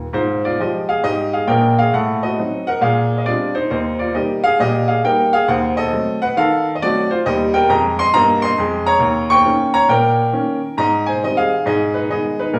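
Exuberant and swinging, this short stride-piano jazz fragment in Eb major moves at 135 BPM in a swung 4/4, with a solo upright piano, clear, woody, open and up front, ranging from Bb1 up to Db6 through a progression that passes Bb13, Ebdim7 and Eb7 before moving to Abmaj7 and Abm, all set in a wet large-studio reverb layered over the ambience of a small room.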